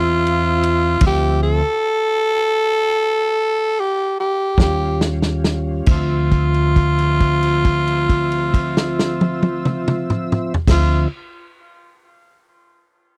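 Slow blues in 12/8 and D minor, soulful and brooding, at 45-54 BPM with a slowing tempo in the opening 5.9 seconds, where a growling tenor saxophone leads with raspy, breathy scooped notes over smooth tonewheel organ chords on slow rotary speaker and chorus vibrato, woody pizzicato upright bass and a dry, gritty soul drum kit with dark cymbals whose fill at 4.6 seconds carries a move from Dm7 to Eb7 and back, before a long note is held from 5.9 seconds in this close, dry 1970s-style studio excerpt cut from a longer piece.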